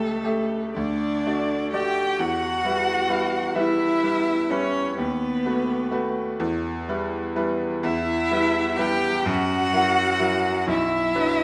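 A distant violin sings a yearning melody with vibrato and portamento over a smooth, up-front cello line and a bright, vintage-toned grand piano's long-sustained accompaniment in this melancholic excerpt from a slow, rubato romantic piano trio movement in 6/8, bathed in the reverb of a recital hall.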